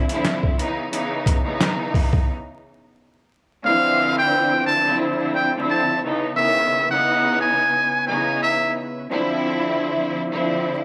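Reflective and dark, this boom-bap hip-hop fragment opens with a lush, bowed string section colored by cassette tape over thumpy, pitched-down sampler drums that drop out at 2.3 seconds, before a buzzy, close-miked muted trumpet carries a jazz-style solo melody through analog delay from 3.7 seconds while a tonewheel organ with fast rotary speaker holds smooth chords in the background, all wrapped in a gritty hardware sound with vinyl crackle and small-room ambience.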